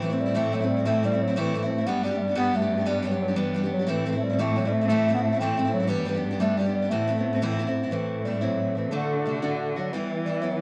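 A jig in 6/8 at 119 BPM drives this wild, dark and lively Celtic folk excerpt in A dorian, cut from a longer piece, with a distant, roomy bass clarinet carrying the melody in a classical solo style while an up-front picked steel-string acoustic guitar supplies warm auditorium-toned accompaniment. A single bowed cello holds the bass with soft attacks, vibrato and expressive portamento, its top end smooth and shadowy. A wet spring reverb bathes the studio sound, and the harmony moves between Am and G before the second section at 7.9 s turns through Am, D and Em.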